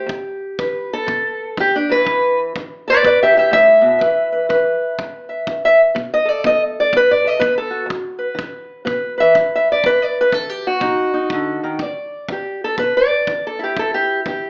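A swung 4/4 pulse at 123 BPM carries this mournful, smoky acoustic country blues in E minor, cut from a longer piece. A fingerpicked steel-string parlour guitar leads the melody from start to finish, sitting up front with a dark, woody, boxy tone from old strings, colored by slapback echo and plate reverb. Behind it, a distant kick drum played with brushes keeps a tight, roomy thump from 0.1 to 14.4 seconds, well beneath the guitar. The harmony moves from Em through Cmaj7, B5, E5 and B before settling on Em7 at 11.8 seconds, where the opening passage repeats. The whole recording has an AM radio character inside a wet studio reverb, giving it a hazy, old-time feel.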